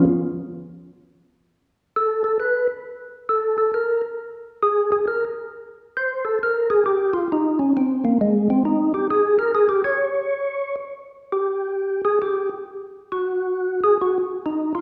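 A swinging 4/4 pulse at 134 BPM, with a firm swing on the eighth notes, carries this soulful jazz excerpt in Ab major, cut from a longer piece. A lone percussive tonewheel organ plays throughout, ranging from Ab3 to Db5 and sitting up front in the mix. Its voice is soft and flute-like, with a clean third-harmonic percussion attack, audible key click, chorus vibrato and the gentle churn of a slow rotary speaker. The organ covers two passages built on the same material, the second arriving at 10.9 seconds and running to the close at 14.8 seconds. A lush recital-hall reverb surrounds the instrument, giving the mellow tone the open resonance of a church or concert hall.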